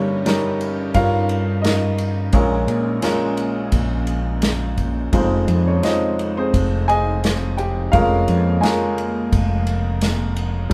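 A moderately reverberant live-room sound frames this melancholic, heartbroken folk-pop ballad at 86 BPM, cut from a longer piece, where a woody upright piano with audible action noise carries the melody up front over a round, dark fretless electric bass, a soft breathy pad with chorus holding sustained chords in the background, and an acoustic drum kit with dark cymbals and a punchy kick played with bundle sticks entering at 0.3 seconds, all moving through Eb7/G, Bbm7, Fm7 and Bbm7/F.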